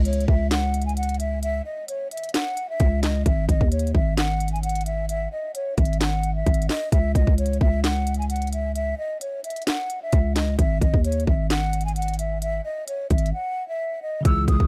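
Trap hip hop at 131 BPM in a half-time feel, dark and brooding in C# minor, built on a growling, buzzy 808-style bass and an up-front trap kit with a hard-clipped kick, sharp snare, crisp hats and handclaps. A hollow, airy concert flute carries the melody with vibrato and a digital delay over chords moving between C#madd11 and G#5, with a break from 13.3 seconds. At 14.2 seconds a bell-like tine electric piano and a very quiet, glassy FM pad enter just before this dry, dark-sounding excerpt cuts off.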